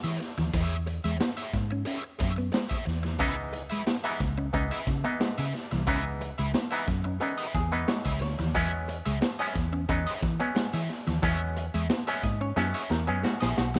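Driving and sly, this funk excerpt moves at 90 BPM in 4/4. A gritty, boomy garage drum kit sits up front, a dark, foam-muted fingered bass rolls underneath, and a crunchy overdriven guitar with wah plays over a clean, mellow guitar riff tucked in the background. From 3.2 seconds a stringy, twangy clav with auto-wah adds up-front stabs and fills over chords moving from E6 to C#m7 and back, while a drum fill at 12.6 seconds closes things out in light reverb and small-room ambience.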